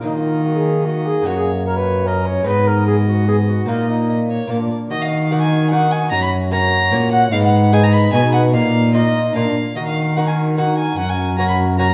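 An up-front, gut-strung cello with an airy bow anchors this solemn, courtly Renaissance-style consort dance in triple time, beneath a reedy period violin on the high second line, a dark, distant cornet carrying the melody, a warm bassoon filling the accompaniment and a bright, delicate fingerpicked lute with doubled strings, the whole consort heard from further back in a reverberant stone room in this short excerpt.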